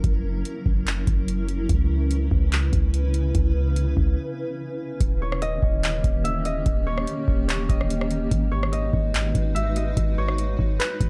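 A booming analog drum machine drives this melancholic, spacious cloud-rap excerpt at 145 BPM in a half-time 4/4 feel, its deep kick, metallic hats, handclaps and rim clicks sitting up front over a warm, sine-based 808-style bass with a fast attack and a decaying tail. A blurred, detuned granular pad drifts beneath on sustained chords moving from F#7 to C#m7, and after a break at 4.2 s the progression shifts to D#7 and G#m7. At 5.2 s a thumb-plucked Celtic harp enters with a ringing acoustic melody through digital delay, all set in light reverb with a faint mains hum.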